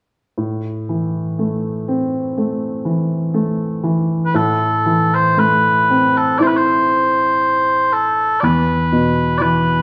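A woody, open upright piano begins alone at 0.4 s on an A minor chord, setting a mournful, haunting Celtic slow air in rubato 4/4 around 60 BPM, tuned slightly low to A4 = 438 Hz. At 4.3 s mellow small bagpipes enter up front with a sweet, continuous solo melody in a narrow upper range, while the piano's accompaniment settles onto an E5 chord at 8.4 s. A moderate recital-hall reverb lends the piece a spacious glow, and it is cut from a longer work.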